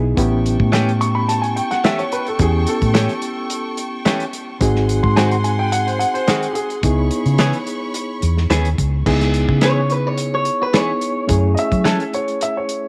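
Soulful and mournful, this straight-eighth soul blues clip in C# minor at 108 BPM sets a woody upright piano over a reedy electric piano with fast tremolo, a round foam-muted fingered bass, a dry, muffled drum kit with dark cymbals, chorused clean guitar stabs and rich bowed chamber strings, before a slightly broken-up electric guitar takes a brief melody from 9.7 seconds over chords moving through A7, G#7, C#m7 and F#m7.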